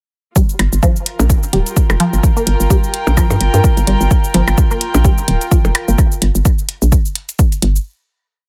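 Minimal techno at 128 BPM in G minor, clinical and hypnotic, where an overdriven, punchy kick drives a four-on-the-floor groove with metallic shaker and hi-hats, a hollow, bouncy FM bass rolls in staccato under sidechain pumping, a squelchy, detuned sawtooth pluck runs a 10-step loop drifting against the bar through chorus, phaser and tape echo, percussion blips click in cross rhythm with dub echo, and a dark, floating string section fades in over a Gm7 chord from 0.4 s until 6.0 s.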